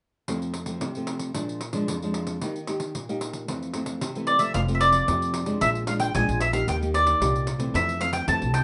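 A rough home demo mix with a dull top and a wet studio reverb carries this playful, lively samba and choro fragment, where a fingerpicked, classical nylon-string guitar and a jingly, vintage pandeiro open together before a picked, double-strung mandolin takes the melody up front at 4.3 seconds and a growly, woody pizzicato upright bass joins at 4.5 seconds.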